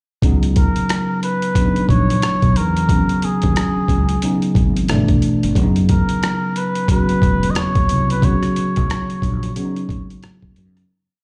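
A swung, slow sixteenth-note boom bap groove on a gritty, pitched-down sampler kit with thumpy kick, hi-hat and rim click drives this sultry neo-soul R&B piece, as a round, dark fretless bass lays back with muted ghost notes and chromatic approach notes, a worn, slightly out-of-tune tine electric piano pushes lightly overdriven quartal chords with grace notes under a subtle chorus, and a breathy, veiled cup-muted trumpet enters at 0.6 seconds with a jazz-style, motif-based solo through slapback and tape echo, the whole heard as a live club set through the venue's PA before fading out from 8.2 seconds.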